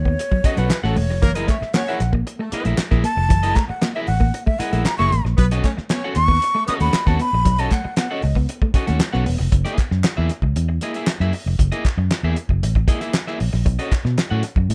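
A breathy jazz flute opens this funky, energetic section of a longer piece, carrying an expressive, up-front solo with a soft attack and lifted highs over a dark, round, foam-muted fingered bass. A cloth-damped, thuddy drum kit with a fat snare and tight kick sits close in the mix, joined by a crisp group handclap and a picked electric guitar at the edge of break-up. A second, clean and compressed guitar plays a twangy riff with spring reverb until about 9.4 s, while the harmony moves between B9 and F#13 chords. A smooth-topped horn section with light vibrato adds a brief second line starting at 1.2 s. Once the flute drops out at 8.4 s, bass, drums, handclaps and the slightly broken-up guitar carry the groove on, framed by the small-room ambience of a rough home demo.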